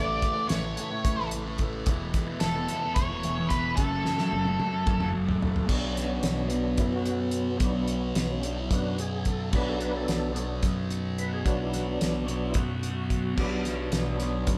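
Lurching along in 7/8 at 219 BPM counted in eighths, this hypnotic, trippy psychedelic rock cut in B minor has a band playing live in one large, moderately reverberant room, with a thick, double-tracked fuzz guitar riff through a phaser and a round, direct fingered electric bass underneath. A dark octave-fuzz lead guitar carries the melody over Aadd9, Esus4 and F#m until 5.1 seconds, while the cloth-damped, thuddy drum kit, with its fat snare, tight kick and rolled-off top, comes in at 0.2 seconds and plays a fill leading into the Bm section. From 5.7 seconds the full, lightly overdriven percussive tonewheel organ, with its slow rotary speaker and chorus vibrato, moves from sustained chords into a solo.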